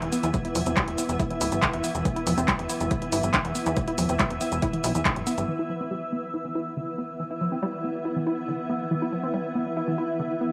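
This dark, relentless stretch of driving peak-time techno has a dry, gritty hardware sound set in a moderate, lush hall reverb, and it is cut from a longer piece. A punchy, tape-warm electronic kick thumps in the first half, from 0.3 to 5.1 seconds, alongside an up-front analog drum machine whose crash cymbal, handclaps, hi-hat and shaker are all dulled by low-pass filtering. A nasal, sawtooth-and-square sequencer bass plucks with a fast attack and pumps against the beat until 5.5 seconds, then drops out. A detuned, chorused sequenced synth carries the riff throughout, its plucked notes trailing analog delay and pumping in time, and filter sweeps move over it in both halves. Beneath, a tense, swarming drone of detuned sine voices hums in the background, while an up-front granular cloud pad spreads a blurred, full-bodied haze high above, both breathing with the same sidechain pulse.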